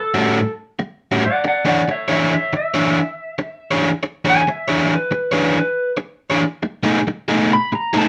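Laid-back, soulful blues with a swung 4/4 feel, cut from a longer piece, where a bright, crunchy overdriven guitar picks a riff from 0.1 seconds while an up-front, clean lap steel guitar carries a twangy, warm slide solo with volume swells over A6, E6 and B6 chords, all captured as a band playing live in one room with light reverb.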